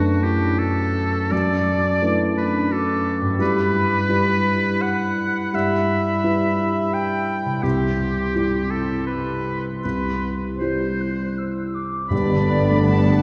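Bittersweet and full of longing, this cinematic film-score fragment drifts in a rubato 3/4 at roughly 76-88 BPM. A soft, felt-muted upright piano sits up front with audible action noise, while a clear oboe, a mellow clarinet, an airy flute heard from afar and a bright, ringing concert harp surround it. At 12.1 s the orchestra arrives: one veiled, con sordino violin section carries the melody while another plays a second line, over dark muted violas, cellos and double basses. A barely audible French horn section holds sustained chords, and very quiet timpani played with soft mallets add a round, dry tone, the whole heard from further back in a wet church reverb.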